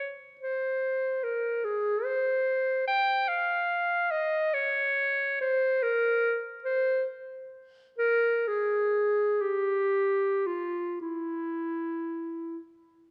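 A lone clarinet opens the recording, its clear, present tone placed up front in a classical solo style. This is a free, expressive classical piece for unaccompanied clarinet in 6/8, moving at a slow, rubato pace of roughly 32-50 BPM counted in dotted quarters. The mood is yearning and mournful, with the line ranging from E4 to G5. A moderate concert hall reverb, with a 1.9-second decay, surrounds the instrument and lets each note linger in the space. The clarinet plays alone from 0.0 to 12.6 seconds, and the recording is cut from a longer piece.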